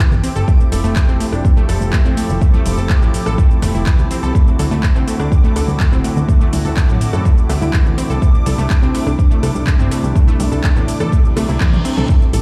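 Played through a big sound system in a bare room with a large studio reverb, this dreamy, driving progressive house excerpt rides on an overdriven, up-front electronic kick and a layered deep house kit of handclaps, metallic hi-hats, rim clicks, shaker and toms, with very quiet, close and dry congas ringing underneath. A punchy, funky plucky analog bass and lush, detuned unison pluck arpeggios with cassette tape character and delay pump against a smooth, warbling vintage pad whose chorused chords move from Fmaj7 to D7 to C6, while a bright, granular backwards swelling texture sits in the background. The downlifter and reverse cymbal effects open the clip and return at 11.3 to 12.1 seconds, joined by a drum fill from 11.4 to 12.1 seconds.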